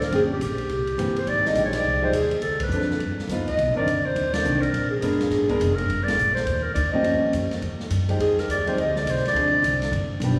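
A growling clarinet opens this short cut of relaxed small-group swing and bop at 208 BPM, with pizzicato upright bass and an open jazz drum kit sounding from the very start. The clarinet carries the melody up front, raspy and gritty in a mellow subtone, with scooped notes and light vibrato. The woody, steel-strung bass sits close, while the drums stay dark and smooth, with dusky cymbals, a medium-tuned snare and a boomy kick. A concert grand piano enters just after to comp with a deep, vintage tone through a progression of minor, altered and half-diminished chords. The whole band hits accents at 2.6, 4.3 and 6.0 seconds, and a wet church reverb gives the swung, warm performance a spacious, hall-like bloom.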